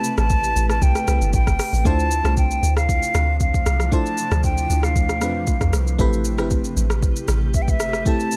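A straight 4/4 groove at 116 BPM drives this soulful, deep amapiano passage in D dorian, cut from a longer piece, with an electronic R&B drum kit placed up front: soft kick, crisp hi-hats, rim click and shaker, given an overdriven edge. At 0.2 s a log drum bass enters, round and percussive with a fast attack and dark decay, sitting low between G1 and F2. Above it, a crystalline FM electric piano sparkles through the accompaniment with chorus, while a granular cloud pad holds blurred, evolving chords in the background, wrapped in its own reverb. A concert flute carries the melody between E5 and A5 with a pure, tongued, straight tone and a touch of delay. The harmony moves from Am9 to Dm7 at 1.9 s and returns to Am9 at 6.0 s, set in a digital ambience.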